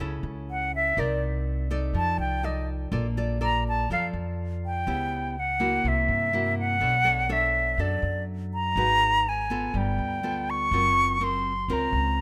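A nylon-string guitar and an upright bass open this breezy, relaxed bossa nova cut, moving at 123 BPM in a straight 4/4. The guitar is fingerpicked with a deep classical tone, and finger squeak comes through, while the pizzicato bass sits up front with a woody, thumpy sound. At 0.5 seconds a bright concert flute enters and takes a solo for the rest of the clip, airy and close-miked with vibrato and a soft attack. Its expressive line rides above the accompaniment, and the harmony drifts through rich extended chords from F#m7 to a closing F#maj7#11. A small room reverb and a rough home demo mix give the whole piece an intimate, informal feel.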